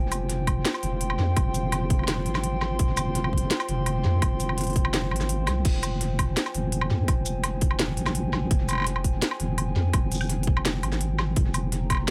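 Dark and spacious, this half-time drum and bass passage, cut from a longer piece, sits on a single F minor chord throughout. A deep, soft wobble bass anchors the low end up front, its rounded sine-and-triangle tone given body by chorus and tube saturation. Above it, a moody analog pad holds sustained chords, its detuned, wave-folded layers blooming slowly under chorus and a sidechain pump. The drum kit is tape-colored and up front, with a cracking snare, crisp hats, shaker, woodblock and crash cymbal trailing tape echo. A tight electronic kick enters at 0.5 seconds and briefly drops out between 4.9 and 5.7 seconds, in a dry but echo-heavy mix.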